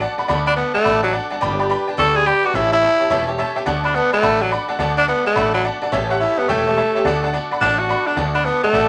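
A swung rockabilly groove at 213 BPM in 4/4 drives this short, upbeat and rowdy excerpt in D major, with a woody, thumpy pizzicato upright bass, a boxy picked swing-style acoustic guitar and a jangly, detuned honky-tonk upright piano all sounding from the start, the piano adding a fill at 3.2 seconds. A raspy, gritty tenor saxophone carries the melody from 0.5 seconds, close-miked and up front with scooped notes and light vibrato, over chords moving between D, G and A7. A small room's reverb and a vinyl crackle with dulled highs give the recording a vintage cast.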